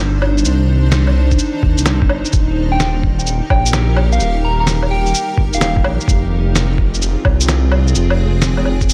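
Nocturnal and ghostly, this short future garage excerpt moves at 128 BPM in 4/4 with a 66% swing on the sixteenths, as a blurred, evolving granular cloud pad holds sustained chords from Cm(add9) to Eb and Fm over a deep, rumbling detuned saw bass that sits up front, both breathing with sidechain pumping. Muffled, pitched-down woodblock, shaker and snare enter at 0.2 seconds, joined by a thumpy, tape-warm kick at 1.3 seconds, all in a small room. Between 2.7 and 5.7 seconds a round, keys-like FM lead warbles through chorus and tape echo, set in a light digital ambience.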